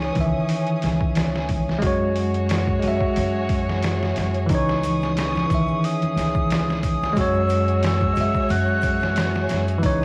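Melancholic and smoky, this trip hop excerpt rests on a bell-like tine electric piano, up front with harmonic tremolo and tape echo, over bowed, vibrato-rich chamber violin chords, a woody pizzicato upright bass, and a gritty, pitched-down sampler-style drum kit with an overdriven, compressed thump. At 4.5 s a hollow concert flute enters with a pure, tongued melody through tape echo, joined by a very quiet bright tube shaker and congas. The whole excerpt carries the hazy character of a home cassette recording, with vinyl crackle and studio reverb.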